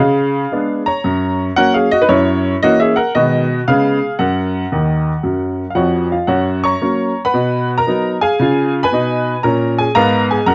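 A clear, woody upright piano plays this short stride jazz excerpt entirely solo, sitting up front with a slightly detuned character and long sustain. The mood is swinging and playful, with a swung eighth-note feel in 4/4 and a span reaching from D#2 up to C#6. The harmony opens on C#7b9 and moves through F#, F#7, B6 and C#7 before returning to F#, and a piano fill from 4.7 to 6.3 seconds rounds off the first passage. The second passage, beginning at 6.3 seconds, moves to B and then C#9. Close, detailed microphones and light reverb keep the piano present and vivid.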